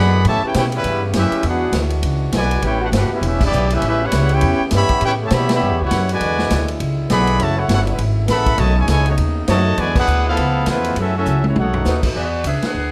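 A clear, tightly knit trumpet section carries the melody from the very start, its smooth top edged with vibrato, while a bright trombone section shapes a soft-attacked second line and a second trombone section holds sustained chords in the background. Beneath them a woody, pizzicato upright bass sits up front, and a swinging big-band drum kit enters at 0.2 seconds, sounding distant and roomy with a punchy kick, medium-tuned snare, hi-hat, ride, crash and toms. This is an energetic, swinging big band excerpt cut from a longer piece, moving through dominant ninth and minor seventh harmony with an altered chord near the end. Full-band accents punctuate the phrase, and a drum fill from 11.3 to 11.9 seconds leads into a clear, soft-attacked saxophone section that takes the melody at 11.9 seconds, joined by a brief stab from a bright trumpet section with light vibrato. A moderate large-studio reverb gives the ensemble a spacious, lively air.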